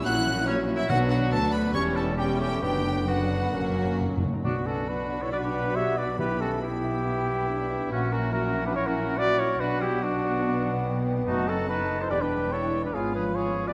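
A moderate scoring-stage reverb gives this stormy, urgent fragment of a fast romantic symphonic movement a roomy, enveloping sound, with a lush bowed violin section carrying the melody high above the orchestra in B minor at 142 BPM, pushed and pulled by rubato. Around it, a very quiet mellow clarinet, an airy flute section, a focused chamber violin section and a distant, clear oboe weave second lines. A very quiet viola section and a bassoon in the background fill out the accompaniment, while a dark, distant French horn section holds sustained chords and a very quiet concert harp rings out arpeggios across a broad range. The bass rests on a close, smooth cello section and an expressive double bass section, with close, dry timpani on calf heads entering at 0.9 seconds and driving a fill into the second section at 4.4 seconds. There a mellow, up-front trumpet with a smooth top begins punching out stabs over dark harmonies such as F#7/A#, B7/F# and a closing C#7/G#, keeping the tension high until the fragment breaks off at 13.7 seconds.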